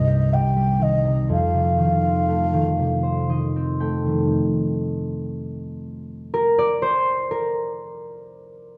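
Mournful and haunting, this short cut from a Celtic slow air drifts in a rubato 6/8 at about 40 BPM in dotted quarters, moving from C minor to F7 over a thumb-plucked concert harp whose ringing, acoustic tone sits close and up front. A mellow wooden baroque flute carries the airy, tongued melody with vibrato until 3.3 seconds, as the harp slips in a fill from 2.8 seconds. The harp then plays alone from 4.3 seconds, bathed in a moderate recital-hall reverb within a dark, warm production.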